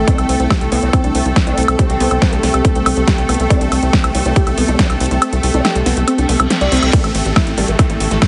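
This excerpt of psychedelic trance at 140 BPM in straight 4/4 opens at once on a bright, morphing wavetable pad holding sustained chords, a darker, ethereal pad of airy detuned texture beneath it, a woody, wave-folded pluck riff with a warbling, vintage edge set in the background, and a tight, driving sequencer bass placed up front. The electronic kick is punchy and forward, joined by a big-room dance kit with a huge snare, metallic hi-hats and woodblock, and a nasal, resonant vowel-sweep wobble bass sits low in the mix as a second line with tape echo. Sidechain pumping breathes through both pads, the pluck and the wobble bass, while chorus and built-in reverb give the pads an alien, psychedelic shimmer. The harmony rests on C5 through the kick's dropout from 5.2 s, and a reverse cymbal and downlifter enter in the background from 6.2 s. The drop lands at 6.9 s on A5, all of it wrapped in a moderate digital room and a heavily compressed, radio-like sound that feels dull at the very top.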